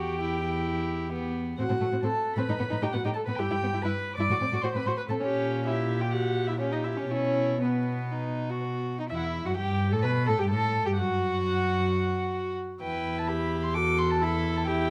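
An up-front, rich cello anchors this quick, graceful and spirited classical-period movement for string quartet in E minor at 130 BPM, with its gut-string bass sitting close beneath a dark, nasal, distant first violin carrying the melody. A second violin supplies a supporting line and a smooth-topped viola fills in the accompaniment; all four are bowed in period style with a reedy edge, and the rubato feel keeps the phrasing supple. Close, detailed microphones in a moderate recital hall with a 1.4 s reverb catch vinyl crackle, and the music moves into a new section at 9.1 seconds in this passage cut from a longer piece.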